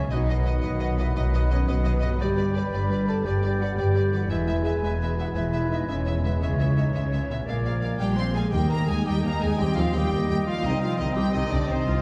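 Soaring and adventurous, this cinematic passage cut from a longer orchestral cue moves at 114 BPM in a straight 12/8, settling into Eb major at 8.5 seconds after a restless run of shifting chords. A lush, vibrato-rich violin section carries the melody, shadowed by a very quiet, soft-attacked second violin line, while a very quiet viola section adds expressive accompaniment with portamento. Underneath, a dark cello section sits in the background and a rich, focused double bass section stands up front as the strongest voice in the bass. Woodwinds weave second lines: a clear, distant oboe, a present solo clarinet and an airy large flute ensemble, all set back behind the strings. A mellow French horn section and a tight, very quiet trombone section hold sustained chords, a mellow solo trumpet adds stabs, and a thumb-plucked concert harp rings out arpeggios throughout. At 8.5 seconds a mellow, very quiet tuba joins the bass and the timpani sounds a dry, articulate Eb with hard mallets, all heard from further back in a reverberant scoring stage.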